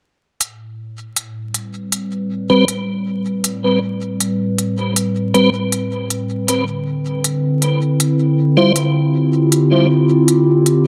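A warbling, tape-like pad stands out in this short excerpt of spacious, meditative ambient dub, holding dark, detuned chords from 0.4 seconds as it fades in, moving from Am9 to Dm11 at 6.5 seconds in A minor. Sitting up front with chorus and its own reverb, the pad has a nostalgic, lo-fi, vintage character, its slow attack and long release giving it a soft, drifting presence. A crisp electronic hi-hat, also up front, runs alongside at a steady 79 BPM in a straight 4/4, its sound carrying the air of a large room. From 2.5 to 8.7 seconds a tonewheel organ adds piping, scooped stabs with audible key click and chorus vibrato, filtered and sent through a dub echo. The echo-heavy mix is bathed in a moderate spring reverb and digital ambience, with a layer of vinyl crackle adding dusty texture.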